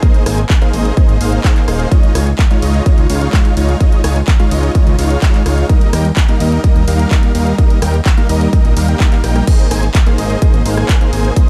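Anthemic and triumphant, this festival progressive house drop in Ab major at 127 BPM, cut from a longer piece, is driven by an up-front, punchy electronic kick and a layered big-room kit of handclaps, hi-hat, ride, rim click and crash, while a huge, airy, detuned supersaw riff pumps with sidechain and tape echo over a fat, evolving analog bass that enters at 0.3 seconds, all moving through Abadd9, Dbadd9 and Eb in a dark, warm digital ambience.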